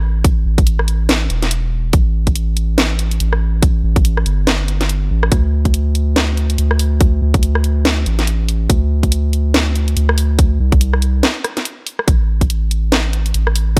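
A swung, half-time 4/4 groove at 142 BPM anchors this brooding, meditative deep dubstep excerpt in A minor, tuned slightly flat to A4 = 437 Hz, with a tight, tape-warm electronic kick and a layered garage kit of hi-hat, rim click and cracking snare entering up front at 0.2 seconds. Beneath them, a soft dub sub bass, round and deep with a triangle and square wave character and a fast attack, sustains between E1 and D2 from the very start. Set in a digital ambience, the groove pauses for a brief break from 11.2 to 12.1 seconds before carrying on to the cut at 13.8 seconds.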